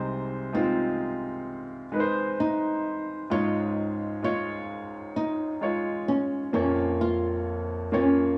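A dark, woody flamenco guitar with old strings fingerpicks a tender melody colored by tape echo, while a clear, polished baby grand piano sits up front in the accompaniment, both carrying a cassette-tape character in a wet studio reverb, as this emotional 65 BPM pop ballad in Db major moves from Ab/C to Db at 3.3 seconds and Bbm at 6.5 seconds in a brief cut from a longer piece.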